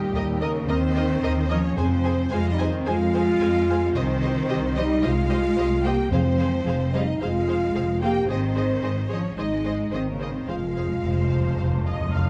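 A mellow French horn section holds sustained chords through this adventurous, swashbuckling cinematic cue, over woody bowed double basses and soft-attack, expressive cellos, while a lush, distant violin section carries a second line, a focused, close viola section accompanies, a smooth studio violin melody sits in the background, and timpani strike at 1.8 and 6.1 seconds before a fill from 10.5 seconds, set in a dark production with moderate scoring-stage reverb.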